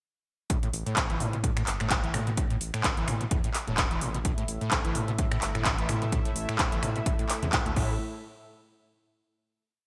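At 0.5 s a hypnotic, gritty acid house drop opens at 128 BPM in a lightly swung 4/4, over an A5 chord. It brings a punchy four-on-the-floor electronic kick, an up-front analog drum machine with metallic hats, finger snaps, handclaps and a crash under gated reverb, and a squelchy, resonant overdriven acid bass riff with accents and slides, drenched in distortion, tube saturation, lush chorus and delay. From 0.7 s a round, deep analog bass pumps beneath with a syncopated riff. At 4.2 s a smooth, detuned analog pad adds sustained chords with chorus, tremolo and pumping of its own, all in a bright 1980s-style digital production with light reverb that ends on a final hit at 8.0 s.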